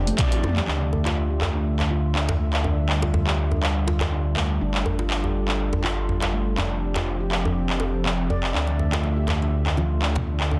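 A detuned sawtooth pad with chorus and 12-bit sampler grit and a round, deep analog bass open this driving, earthy afro house excerpt at 122 BPM in D minor, joined by a mellow nitrided-steel handpan playing low-pass filtered, delayed arpeggios, all three pumping to the sidechain, while an up-front deep house kit with dark hats, handclaps and toms plays a fill from 0.2 to 0.7 seconds beside a tight, cracking djembe, ringing congas return very quietly at 8.7 seconds, and the dense, heavily limited mix moves from F through Dsus2, G5 and F5 in a digital room reverb.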